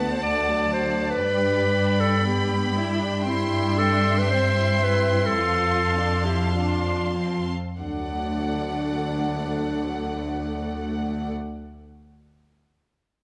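A moderate scoring-stage reverb gives this short cut from a heroic adventure film score a spacious, triumphant glow. It sits in D mixolydian at 92 to 119 BPM in 4/4 and slows between 2.2 and 7.8 seconds, as the chords move from D through G, C/G and F before returning to D. A symphonic violin section carries the smooth, lightly vibrato melody up high while a clear solo clarinet and a lush studio violin section add second lines, a background viola section with portamento accompanies, a mellow French horn section holds sustained chords, a rich cello section sits up front on the bass, and a barely audible ringing harp plays arpeggios only through the first 2.8 seconds.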